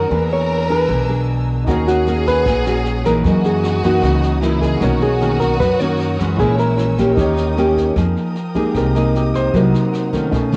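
A straight bossa nova groove in four sets a melancholic, wistful mood in this short cut from a longer piece. A fingerpicked nylon-string guitar sits up front with a full-bodied, deep classical tone, beside a woody, thumpy pizzicato upright bass. A distant, roomy brush kit joins at 1.7 seconds, with a boomy kick, high-tuned snare and rim clicks. A dark, clean hollow-body electric guitar carries the melody until 7.3 seconds over a lush, bowed violin section with expressive vibrato. A soft-attack string section holds sustained chords with portamento, and a natural-sounding concert grand with deep bass stays in the background before taking a solo at 8.0 seconds over Fm11 and Cm7b5. Light reverb and the cassette tape colouring most parts give it the intimate feel of a home recording.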